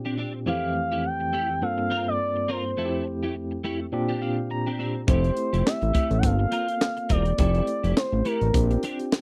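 Swung sixteenths at 104 BPM in 4/4 drive this smooth, feel-good slice of early-eighties boogie funk in F major. A barky tine electric piano with medium tremolo through a combo amp and a clean, compressed electric guitar riff with ensemble chorus carry the Fmaj9, Gm11 and Bb69 changes beneath a gliding portamento lead, whose triangle-and-sine tone is coloured by chorus, vibrato and slapback echo. After the electric piano plays a fill from 3.9 seconds, a fat, saturated, detuned sawtooth bass and a tight acoustic funk kit with a high-tuned snare, punchy kick, hi-hat and handclaps arrive up front at 5.1 seconds, all captured in a dry, close 1970s-style studio sound.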